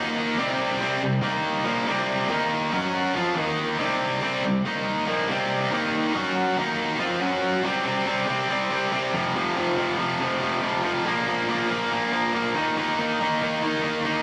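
Rock at 140 BPM in a straight 4/4, with a driving, brooding mood in this short cut from a longer piece. A single tight, distorted electric guitar plays alone from 0.0 to 14.2 s, picked and double-tracked, sitting up front with a bright tone and a slapback echo. In the opening stretch it works quickly through power chords around C5, Eb5, F#5 and F5, returning again and again to C5 and Eb5. At 7.6 s the passage shifts into a new section where the chords change far less often, holding C5, then F5, Bb5 and Eb5. A lush hall reverb with a long 2.3 s tail surrounds the guitar, giving the recording a big arena sound.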